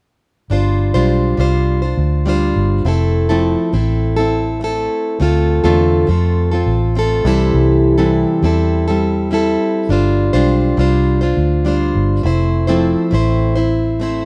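A picked, plugged-in steel-string acoustic guitar sits up front with a concert-like tone and audible finger squeak, carrying a carefree, sunny acoustic pop accompaniment at 102 BPM in a straight 4/4 through chords such as G7sus4, Fmaj7, Dm7 and C6. Beneath it, a vintage foam-muted electric bass, played with the fingers, adds a dark, round and punchy low end, also up front, with both parts playing from 0.5 to 14.3 seconds. The dry, close 1970s-style studio sound, tuned slightly low to A4 = 438 Hz, frames this short cut from a longer piece.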